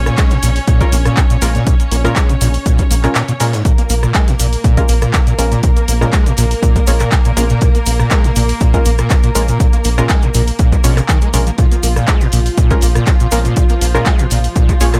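A squelchy, distorted acid bass riff with resonant filter sweeps, ensemble chorus, cassette-tape grit and delay drives this trippy, gritty acid house excerpt at 121 BPM in Bb minor, held on a single Bbm7 chord over a deep, round analog bass. Around it sit clear, bowed symphonic strings with light vibrato, both basses and the strings carry sidechain pumping, and muted, detuned dub chord stabs with chorus and delay come in at 0.8 seconds. The beat comes from an up-front punchy electronic kick, a tape-warm analog drum machine with handclaps, hi-hat and rim click, a grainy, bright cabasa in the background and a very quiet, dark cocktail drum kit with hi-hat and a high-tuned snare, all under light reverb.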